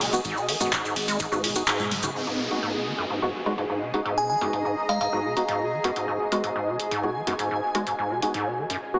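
A raw, playful acid house fragment opens on a squelchy, resonant square-wave acid riff with overdrive, chorus, tape echo and sidechain pumping, over a booming analog drum machine with metallic, filtered hats, handclaps, and filtered ride and toms. Around them sit a round, dark analog bass, a faint deep kick, grainy maracas, a cloudy granular pad and hollow organ stabs set further back. The round bass and maracas stop at 2.1 s, and at 2.2 s a filter sweep takes hold of the drums as a downlifter begins; a glassy, warbling FM bell with tremolo flashes through at 4.2 s, all in a heavily compressed, small-speaker radio sound bathed in lush hall reverb.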